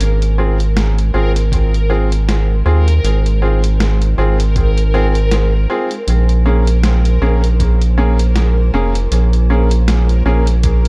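A round, dark analog bass sits up front with tube saturation in this spacious, deep ambient dub excerpt at 79 BPM, swung on the 16ths and moving from Ab6 to Bbm7 at 6.1 seconds. A bright, woody upright piano with audible action noise plays dub-echoed stabs from 0.4 seconds, while a muffled, lo-fi sampler-style kit of hi-hat and snare carries its own dub echo and a thumpy electronic kick joins in the background at 1.5 seconds. Beneath them drift a very quiet, cloudy granular pad holding sustained chords and a reversed, dreamy swelling texture, both soaked in their own reverb within an echo-heavy digital ambience.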